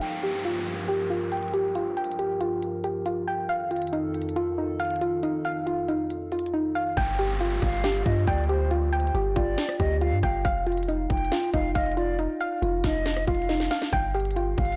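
A soft, round pluck sets the tone of this hard-hitting, menacing trap excerpt. Its dark arpeggios sit up front for the whole clip, shaded by chorus and a low-pass filter and trailed by digital delay, with a filter sweep across the opening 7.0 seconds. Beneath it, a hollow, flute-like pad holds slow-blooming chords in the first half while a downlifter effect drops in twice. An electronic trap kit drives a half-time groove with a hard-clipped kick, sharp snare, rim clicks and crisp hats. At 7.0 seconds a deep, long 808-style bass arrives up front with a mellow sine tone, and soon after a pure, close-miked concert flute adds a second line with vibrato and delay, while a short drum fill lands near the end. The whole mix is blown-out and overdriven, dull at the top and set in light digital ambience.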